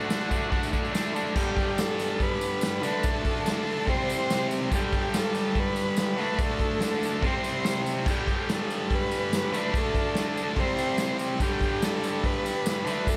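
A bright, double-tracked overdriven guitar riff, a buzzy vintage combo organ melody with heavy vibrato and a jingly tambourine in the background open this swaggering, menacing garage rock excerpt over D, G and C chords, with a raw, gritty drum kit of punchy kick, medium-tuned snare, hi-hat and crash entering up front at 0.1 seconds, set in a moderate stone room reverb.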